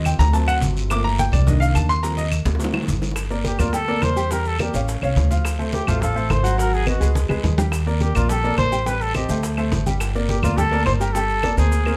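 A fiery, sultry excerpt of Afro-Cuban jazz opens on an intimate upright piano with audible action noise, over a woody pizzicato upright bass up front, while low-tuned congas, tight high-tuned cowbell and bongos, claves and grainy maracas sit in the background beside a raspy, dry guiro; after a drum fill at 2.5 seconds, a breathy, mellow trumpet with vibrato and plate reverb takes a distant, whispered jazz solo from 3.5 seconds, with another fill at 7.2 seconds in a lightly reverberant room.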